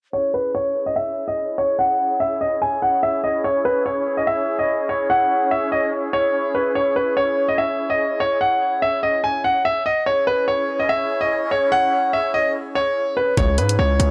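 A half-time drill groove at 145 BPM in C# minor sets an ominous, tense hip hop mood, as a clear, long-sustaining concert grand piano carries a filtered melody over airy, vibrato-touched sustained chords from a large flute ensemble on C#m under a filter sweep, until at 13.4 seconds a saturated, heavy 808-style bass and an overdriven drill kit with knocking kick and bright hi-hats enter up front, all within a gritty, dry-sounding studio reverb in this excerpt cut from a longer piece.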